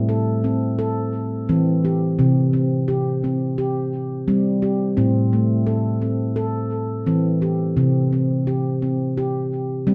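A solo handpan sits up front, its stainless steel notes struck with the fingertips and ringing out smooth and dark across a range from A2 to A4. This short cut from a longer world piece has a dreamy, gentle, meditative mood, moving at 86 BPM in 4/4 with a light swing on the sixteenths and staying within C major pentatonic. The harmony alternates between A minor and C5, shifting at 2.2, 5.0 and 7.8 seconds. A diffuse ambient delay trails the handpan, and a moderate echo-chamber reverb blends with a small-room ambience around it. The production is warm and shaded, giving the whole passage a soft, enclosed glow.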